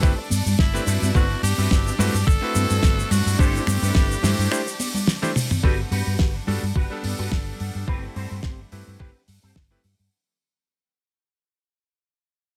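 An overdriven, thumpy electronic kick sits up front in this sunny, feel-good nu-disco cut, backed by a round, punchy fingered bass, a damped 70s drum kit with a fat snare, finger snaps, hi-hat, shaker and toms, and ringing, high-tuned congas in the background from 0.3 s. A raspy, gritty tenor saxophone with scooped notes and tape echo carries the melody until 5.4 s, over a bright electric grand piano with a clangy bass register and dub echo, a twangy envelope-filtered guitar riff with ensemble chorus, and a bowed symphonic string section with sidechain pumping behind them. After a brief break and drum fill, the track fades out from 5.6 s over extended chords in a dry mix with little reverb.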